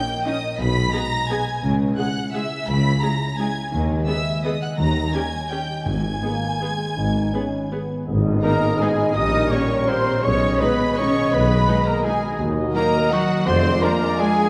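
An orchestral ballroom waltz excerpt in G# minor, sweeping and dark, flowing with rubato at around 155-186 BPM as lush, expressive violins carry the melody over a second violin line, dark distant French horns, ringing harp arpeggios, a background bed of viola, clear cello, mellow tuba and double bass, and a brief hard-mallet timpani touch, before a band accent at 8.1 s brings in soft trumpet stabs, quiet trombone chords and a close tam-tam, with airy flutes, cor anglais and clarinet joining on a second line moments later, all bathed in concert hall reverb.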